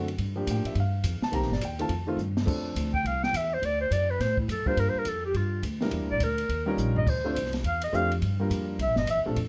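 A warm concert grand piano with deep bass and a woody, pizzicato upright bass open this swinging, up-tempo small-group jazz excerpt in F major at 209 BPM, quickly joined by an acoustic drum kit with dark cymbals, a high-tuned snare and a punchy kick that adds fills at 2.2 and 6.8 seconds, before a breathy, mellow clarinet with light vibrato, scooped notes and plate reverb enters at 2.9 seconds for an intimate, vintage-toned solo over chords moving from F6 through D, Gm7 and Dm7 to C7, set in a moderate studio ambience.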